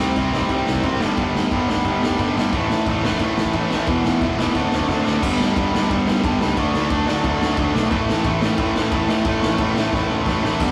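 Energetic and rowdy, this punk rock excerpt charges along in a straight 4/4 feel, cut from a longer piece. Three electric guitars drive the riff from the start: a bright, tight distorted guitar sits up front, a dark overdriven semi-hollow guitar with a hollow-body tone sits in the background, and a very quiet double-tracked fuzz guitar adds a warm, furry layer beneath them. A punchy fuzz picked bass, overdriven and recorded both direct and amped, holds down the low end from the background. The raw garage drum kit enters at 0.2 seconds, up front with a boomy kick, a medium-tuned snare, crash and ride cymbals, and a rolled-off top in a stony, natural room sound. A drum fill at 4.9 seconds marks the turn into the second section, and another arrives at 9.9 seconds near the close. Across the sections the chords move from C, G, A, E and D7 to G, D and A, all captured in a rough rehearsal-room recording with a short, moderate small-room reverb.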